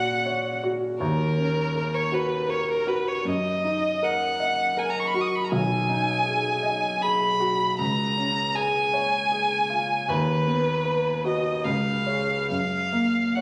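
Lyrical and tender, this short passage, cut from a longer piece, is a romantic classical duo for violin and grand piano in triple metre, played with flexible rubato. A single bowed violin carries the melody throughout, its tone warm, focused and rich with vibrato, with a smooth top. The grand piano accompanies from its low bass upward, sounding mellow, smooth and slightly vintage, and sits up front in the mix alongside the violin. The harmony moves through minor-seventh and slash chords before settling onto C# and resolving to F# at 12.5 seconds, just before the passage ends at 13.4 seconds. Captured on a phone in a recital hall, the sound carries a moderate reverberation, enhanced with added studio reverb and compression, that gives the intimate playing a sense of space.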